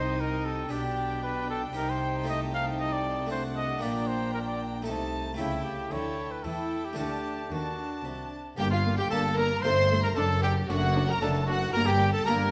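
In a straight 3/4 at 114 BPM, this stormy, dramatic baroque-style concerto movement in G minor is cut from a longer piece, with a clear solo trumpet up front carrying the melody while a bowed violin section with expressive vibrato also plays a melody high above and a second, smooth and even violin section weaves a supporting line. Beneath them, a round, plucked Flemish-style harpsichord and a focused viola section fill in the accompaniment, and the bass is anchored by a lush symphonic cello section and a dark chamber double bass section with soft attacks and portamento. The harmony passes through a D chord before a new section opens on G minor at 8.6 seconds, and the whole ensemble sits in the reverb of a recital hall.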